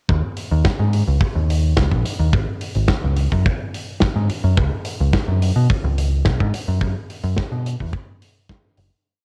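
Nu-disco at 107 BPM in a straight 4/4, this short, complete piece has a sensual, cosmic mood and runs as a single groove from start to finish. A deep dub picked electric bass carries a funky syncopated line, dark and round in tone, sitting up front and ranging from F#1 to B2. A punchy acoustic kick drum holds a four-on-the-floor pulse with a big-room sound, also placed up front and colored by cassette tape. Entering at 0.4 seconds, a big rock drum kit adds a disco backbeat on a medium-tuned snare with hi-hat, sitting lower in the mix and likewise carrying the cassette tape character. The home cassette recording is dry, with little reverb, and the track fades out from 6.1 seconds to its end at 9.1 seconds.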